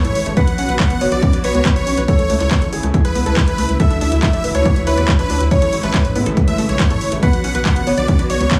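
Uplifting trance at 140 BPM in A major, this short, soaring passage is cut from a longer piece and moves through Bm, Amaj7 and Dadd9 chords. A huge, euphoric supersaw lead carries the melody with a bright, detuned sawtooth sound, pumping against the beat and trailed by dub echo. Behind it, a catchy square-wave unison lead with vibrato and a filter sweep plays a second line in the same upper register, while a felt-muted upright piano adds a soft, intimate second line with audible action noise, both sitting in the background with dub echo. Dark, veiled con sordino strings hold lush bowed chords, and a tight sequenced synth spins chorused, detuned arpeggios underneath. A driving, saturated sequencer bass anchors the low end, joined by a punchy analog drum machine with handclaps and pumping hi-hats, and from 0.4 seconds a tape-warm electronic kick sits up front in a close, dry room.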